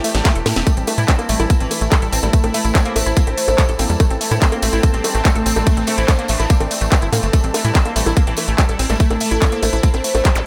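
A driving 144 BPM pulse in 4/4, led by an overdriven, up-front electronic kick and a tight, punchy sequencer bass, anchors this hypnotic psychedelic trance excerpt in A phrygian, where a drum fill opens a drum and bass kit of cracking snare, metallic hats, bongos, handclaps and ride, a jingly tambourine sits in the background, a woody wave-folded pluck riff and a bright, plectrum-plucked oud melody with phaser and delay weave over a bubbling stepped-filter texture and a cloudy granular pad, a very quiet metallic wobble bass adds a second line from 1.1 to 9.8 seconds, and a zap sounds at 10.4 seconds.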